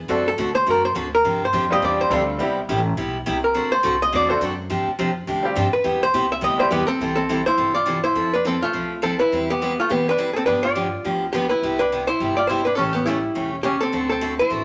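A playful, down-home slice of country western swing, taken from a longer piece and moving at a brisk 208 BPM in 4/4 with a lilting swing on the eighth notes in C major. A dark, clean, compressed hollow-body archtop guitar carries the melody up front, picked with an amplified, miked tone, and takes a solo through the first 7.0 seconds. Beneath it, a bright, full-bodied dreadnought acoustic guitar is picked as accompaniment, also sitting up front, while a thumpy upright bass with gut strings supplies a woody, dark pizzicato foundation. A brilliant, polished upright piano with short sustain adds accompaniment only until 6.7 seconds, after which the guitars and bass continue into the second section. The harmony cycles D7, G7sus4 and Cmaj7 before moving through C6, Fmaj7, G7 and A7 to land on D7, all set in a wet studio reverb.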